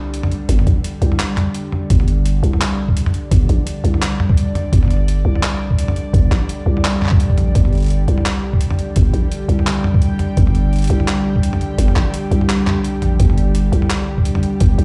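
Spacious and dark, this half-time drum and bass excerpt opens on a tense, string-like bowed drone with 12-bit sampler grit, reverb and sidechain pumping, over a growling, buzzy 808-style bass held up front, while a gritty, pitched-down boom bap kit of handclaps, hi-hat and toms comes in almost at once, followed by a thumpy, tape-warm electronic kick that enters at 0.7 seconds and drops out from 11.8 to 13.2 seconds, all heard through a big sound system in a bare room with large studio reverb.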